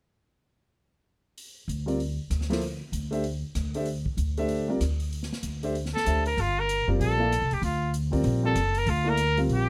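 Cool and spiritual, this short modal jazz excerpt swings in 4/4, opening at 1.4 seconds with an airy, polished big-band drum kit of hi-hat, rim click, punchy kick and medium-tuned snare, joined by a woody, growly pizzicato upright bass and an up-front grand piano over a Gsus4 chord. At 5.9 seconds a clear, vintage trumpet takes a solo with vibrato, sitting forward over the group in light reverb, and at 6.4 seconds the harmony shifts to Gm11.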